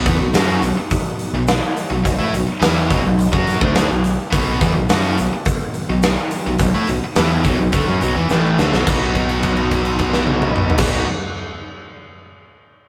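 A punchy, up-front big rock drum kit with bright cymbals drives this swaggering, sunny classic rock excerpt in B mixolydian at 106 BPM alongside two picked, distorted electric guitar riffs, one tight and one compressed and scooped in the background, a growling overdriven fingered bass, a very quiet lush vintage string machine holding sustained chords, and a faint grainy egg shaker, all in a rough rehearsal-room sound with tube saturation and moderate reverb, as a drum fill at 8.3 seconds leads into a held note at 8.9 seconds.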